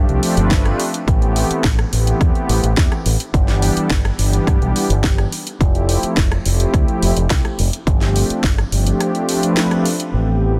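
Nu-disco at 106 BPM in a straight 4/4, this short excerpt has a sensual, sleek mood. A warm analog pad carries the harmony, its detuned sawtooth tone smooth and slow to bloom, thickened with chorus, delay and sidechain pumping as it sits up front from E3 to B4. Beneath it, a fingered electric bass run through an envelope filter and tube saturation sounds bright and direct, moving between F1 and G2. A layered house drum kit with a cracking snare, rim click and bright hi-hats runs from 0.1 to 10.1 seconds, joined at 0.5 seconds by a punchy electronic kick, both parts roughened with overdrive. The chords move from G9sus4 through Am7, Em7/G and Fmaj7 before returning to G9sus4, all set in light reverb within a dense, heavily limited modern master.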